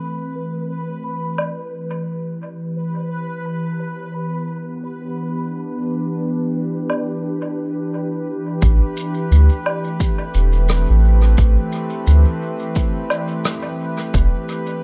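An echo-heavy, reverb-soaked mix frames this hazy, spacious ambient dub piece, cut from a longer work, moving at 87 BPM in 4/4 with a swung 16th-note feel in A minor. A warbling, nostalgic lo-fi pad with chorus holds detuned chords from Am9 to Em7 under a filter sweep, beside a bubbling, resonant texture of random filter steps, while a dark, brushed woodblock, shaker and rim click drift through dub echo. At 8.6 seconds the bubbling layer stops as a round, mellow sub bass enters up front alongside a deep, overdriven electronic kick.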